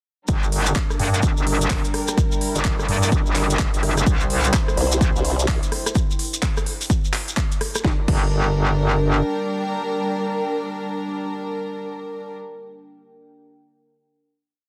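Bass house at 127 BPM in G dorian with a gritty, swaggering 16th-note swing, built on a punchy, overdriven four-on-the-floor electronic kick and a garage drum kit of crisp hats, cracking snare, rim, clap and crash, while a metallic, saturated wobble bass drives the drop from 0.3 seconds over Gm and C, a detuned formant-sweep wobble bass briefly joins at 4.8 seconds, a grainy hand-played shekere adds sixteenths, and a sul tasto string section and a moody, wave-folded ambient pad sustain through to the final Gm chord at 7.8 seconds under a dense, heavily limited master.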